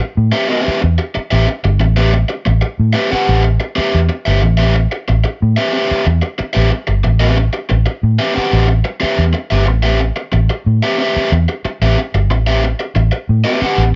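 A straight 4/4 funk groove at 92 BPM drives this hypnotic cut from a longer piece in A dorian, resting on a single Am9 chord, with an overdriven, picked raw garage guitar up front from the start and a dark, round, punchy foam-muted fingered electric bass entering at 0.2 s, the pair sitting in a digital ambience whose top end stops at 7.6 kHz.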